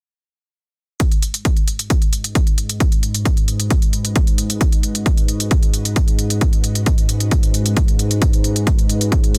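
A straight 4/4 pulse at 133 BPM drives this dark, hypnotic slice of peak-time techno in G# minor, as a heavy, overdriven kick sits up front from 1.0 s with smooth, overdriven hi-hats that pump against it. A mellow, detuned analog drone on G#2 arrives at 1.8 s, warbling and slowly evolving under chorus and sidechain pumping. From 2.3 s an ethereal, airy pad fades in far in the background, treated with ensemble chorus, phaser and reverb inside a dense, heavily limited modern master.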